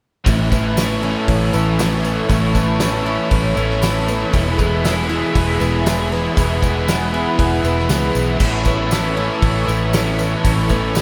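A straight, even 4/4 pulse comes from a loose, distant indie drum kit with a fat snare, punchy kick and dark cymbals, joined by a round, foam-muted vintage bass and a jingly tambourine tucked in the background, all set in a blissful, wistful shoegaze and dream pop mood cut from a longer piece. A biting overdriven guitar riff starts at 0.2 seconds, with two very quiet hollow-bodied semi-hollow guitars, one double-tracked, playing riffs beneath it, while a boxy twelve-string acoustic shimmers through delayed arpeggios. A swirling, detuned sawtooth pad with phaser and chorus holds slow-blooming chords over Aadd9, E and back to Aadd9, and a huge ambient reverb with a 7.4-second tail soaks the whole mix in haze.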